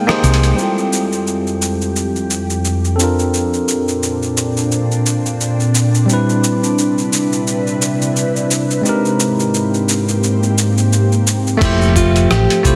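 A bell-like tine electric piano provides the accompaniment in this sunny, relaxed sunset chillout piece at 87 BPM in F major, its tone filtered and echoed through a long filter sweep from 0.6 to 11.6 seconds, while an ethereal, detuned sawtooth pad with chorus and phaser sustains lush maj9 chords moving from Fmaj9 through Bbmaj9 and Cmaj9 to Abmaj9. A gritty, overdriven sampler-style kit of cabasa, hi-hat, rim click and crash swings loosely underneath from a brief opening band accent onward, where a round, hollow-body fingered electric bass makes a short appearance. At 11.6 seconds the bass returns alongside a thumpy electronic kick and a small, fingerpicked nylon-string guitar melody, all set in a dense, heavily limited mix with a lush hall reverb.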